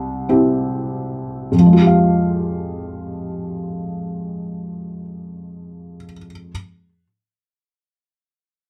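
The recording is dry and close, with a felt-muted upright piano sitting up front, its soft, mellow tone carrying audible action noise that makes the sound feel intimate. This short classical excerpt in F minor moves in a slow, rubato 6/8 at 48 dotted-quarter beats per minute, with a reflective, longing mood. The piano is the only part and plays an accompaniment role throughout, ranging from C2 up to F5. The opening passage rests on a C chord and slows down before settling at 1.5 seconds into a new section on Fmadd9. That second section continues until the excerpt ends at 6.5 seconds, cut from a longer piece.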